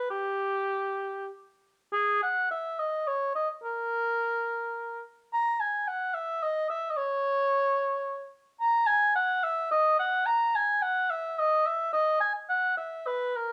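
A mellow oboe with light vibrato plays a grave, introspective baroque-style fantasia alone in 3/4, moving with a rubato feel around 92-112 BPM between G4 and A#5, its brief opening phrase giving way at 1.9 s to a longer passage that runs to 13.5 s, set in a dark production with the moderate reverb of a stone room in this fragment cut from a longer classical piece.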